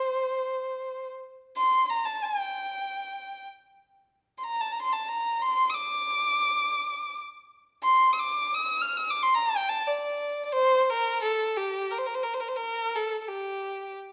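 Soulful and hypnotic, this short excerpt from a longer Persian piece in a straight 3/4 features a lone bowed violin, close and up front, its rich, smooth, even tone shaded with vibrato as it ranges from G4 to F6 through a moderate recital-hall reverb, shifting to a new section at 11.6 seconds.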